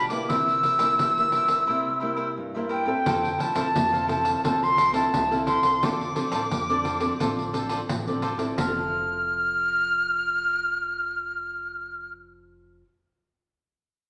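An airy, up-front silver concert flute carries the melody high in its range with tongued, unsteady notes and vibrato, leading this joyful, festive samba and choro in F major at 87 BPM, cut from a longer piece. Beneath it, a bright, crisp picked cavaquinho and a small, fingerpicked nylon-string guitar with audible finger squeak move through C7, Fmaj7, Dm7 and F, while a jingly pandeiro adds sparkle until 8.7 s. After a break at 1.7 s, a quiet, woody pizzicato upright bass with steel strings enters at 3.1 s, and a wet, large studio reverb gives the ensemble a festive glow.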